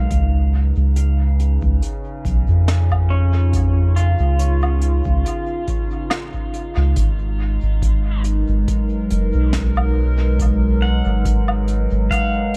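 A round, soft dub sub bass sits up front through this hazy, spacious ambient dub excerpt at 70 BPM in G# dorian, tuned slightly flat to A4 = 436 Hz, with a light 16th-note swing. A warbling, nostalgic pad holds detuned, mellow chords through chorus, phaser and reverb, while a clean, compressed pedal steel guitar plays fingerpicked slide arpeggios with volume swells and analog delay. A deep electronic kick stays in the background beside a muffled, lo-fi brush kit of hi-hat, snare and woodblock carrying dub echo in an echo-heavy small-room mix, as the harmony moves from C#7 to G#m7 at 7.0 seconds.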